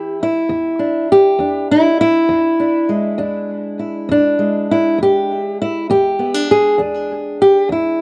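A fingerpicked, ladder-braced acoustic guitar opens on an E7 chord and carries this short cut from a longer acoustic country blues alone, running from E2 to G#4 in E mixolydian. The feel is laid-back and rollicking at 67 BPM in 12/8, with the guitar's dark, woody, boxy tone and old strings sitting up front, touched by tape echo. The dry, close sound of a 1970s-style studio takes on light reverb across the 8.0 seconds.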